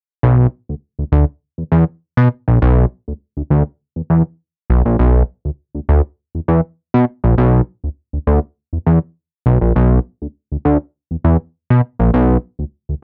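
A fat analog bass carries this funk excerpt entirely on its own, playing from 0.2 to 12.9 seconds in a low register spanning A#1 to B2. Its thick, detuned sawtooth tone has a fast attack and sustained notes, and a filter sweep shapes the sound as it plays. The groove sits at 101 BPM in a straight 4/4, giving the passage a hypnotic, funky pull. The bass is placed up front in a dry, close 1970s-style studio sound, with only light reverb around it. Cut from a longer piece, the whole clip holds to a single section.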